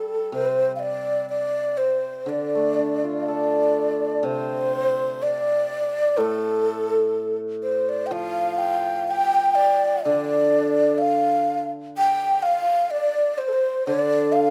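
Set in a light reverb, this wistful, tender excerpt from a longer Chinese traditional chamber piece moves freely at 62 BPM in 4/4, in D yu mode with A4 tuned to 439 Hz. Two end-blown bamboo xiao play throughout. The low xiao carries the melody up front, breathy and close-miked, with vibrato and a crisp attack, while the second xiao traces a soft-edged, slightly unsteady second line in the same range. Beneath them, a bright, shimmering, ringing hammered dulcimer sits forward as accompaniment, and the music moves into a new section at 4.3 seconds.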